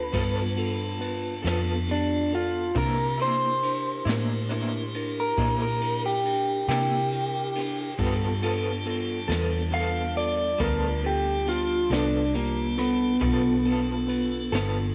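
A straight 12/8 pulse at 46 BPM drives this laid-back, swaggering slow blues in G mixolydian, where an up-front, slightly broken-up electric guitar solos through a small old amp over a lo-fi, compressed second guitar with tremolo, a clean tine electric piano in the background, a piping, lightly overdriven tonewheel organ with key click and slow rotary speaker, a round, punchy foam-muted fingered bass, and a jazz brush kit with boomy kick, medium-tuned snare and dark cymbals, as the chords move from G9 to C9 at 2.8 seconds and back at 8.0 seconds in a small room with light reverb.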